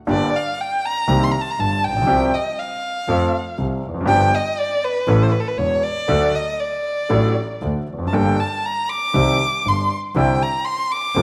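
Tango in G minor at a rubato 120 BPM, this playful, passionate fragment of a longer piece features a bowed violin solo, warm and expressive with vibrato, portamento and a soft attack, over an intimate concert grand piano accompaniment with deep bass, long sustain and audible action noise, while a biting, earthy bowed double bass with an airy, nasal edge anchors the harmony as chords move from Gm through Cm7, F, G7, A and D to Cadd9, all set in a small room with moderate echo-chamber reverb.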